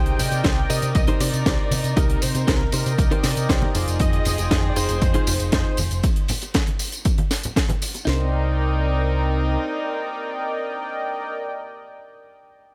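A straight 4/4 groove at 118 BPM drives this groovy, sleek nu-disco passage in C minor, where a punchy, overdriven house kit layers with a tight acoustic funk kit with dark cymbals and a very quiet, dry tambourine, conga and bongo part until the drums and percussion stop near 8.1 seconds, while a round, up-front picked bass with an envelope filter, a bright, compressed clean electric guitar riff, softly bowed chamber strings in the background and a smooth, sidechain-pumped analog pad with chorus support a thick, detuned unison lead with 12-bit sampler grit and digital delay that carries the melody until 6.0 seconds, all over Cm7 and Fm7 chords with little reverb.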